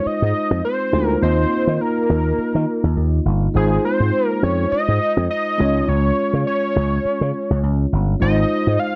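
A lightly swung 4/4 groove at 103 BPM drives this nostalgic, uplifting 1980s-style pop fragment in Ab major, where a growly, punchy slap bass with an envelope filter sits up front beneath a clean tine electric piano heard through its built-in speakers, while a thick, detuned sawtooth unison lead with a sub octave, vibrato and slapback echo carries the melody from 0.0 to 9.0 seconds over Ab6, Ebsus2 and Db chords, all captured in a dry, close 1970s-style studio sound.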